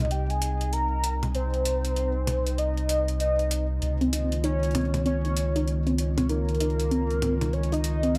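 Eerie and cerebral, this short IDM excerpt at 97 BPM swings its 16ths in C phrygian, moving from Cm7 to Db69 over a round, dark analog bass with tube saturation and a gritty, pitched-up jungle sampler-style kit of hi-hat and toms driven through overdrive. A mellow, nostalgic lead with vibrato and dub echo sits up front above a detuned, lo-fi tape-like pad with a slow attack and built-in reverb. At 4.0 seconds a dusty, warbling pluck joins with chorus and analog delay arpeggios, all inside an echo-heavy mix with digital ambience.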